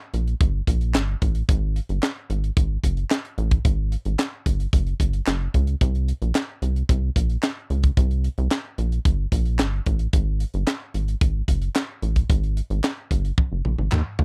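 Funky and late-night in feel, this short excerpt of early-eighties boogie funk moves at 111 BPM in a straight 4/4, with tuning set slightly low at A4 = 439 Hz. A rubbery, hollow square-wave bass sits up front from the start, its filter pluck giving each note a fast, bouncy attack before it sustains into a dark, resonant tone between Gb1 and Eb2. Beside it, a tight funk drum kit with a high-tuned snare, tight kick, hi-hat, toms and handclaps plays with a mid-forward, small-room character. A group handclap enters at 0.9 seconds, sounding human and crisp but set back in a larger, more distant space. The whole recording has a dry, close feel in the manner of a 1970s studio with little reverb, and a drum fill from 13.4 seconds closes the passage.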